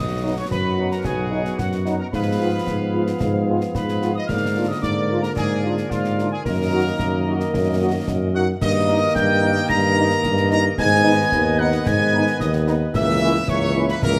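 A warm, up-front tuba anchors this stern, martial wind-band march in 2/4, cut from a longer piece, beneath a clear trumpet section carrying the melody while a wooden, crisp-attacked piccolo and a softly vibrato woodwind section trace second lines. A punchy trombone section holds sustained chords and a mellow, distant French horn section fills in accompaniment from 0.2 seconds, with concert snare, bass drum and dark clash cymbals entering at 0.5 seconds, close and dry. The ensemble sits in a moderate scoring-stage reverb, and the harmony shifts into a new minor key at 8.6 seconds.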